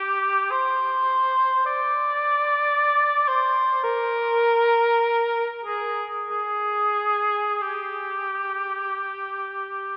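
A lone cor anglais sits up front in this brief classical passage, its warm, vintage tone shaded with a light vibrato as it sings between G4 and D5. The mood is yearning and lonely, and the playing has a free, expressive rubato over a slow 4/4 pulse that drifts between 44 and 57 BPM. The instrument plays alone from 0.0 to 10.0 s, tuned to A4 = 441 Hz. A wet church reverb with a 3.0 s decay surrounds every phrase, and the recording's top end stops at 10.6 kHz. The 10-second passage is cut from a longer piece.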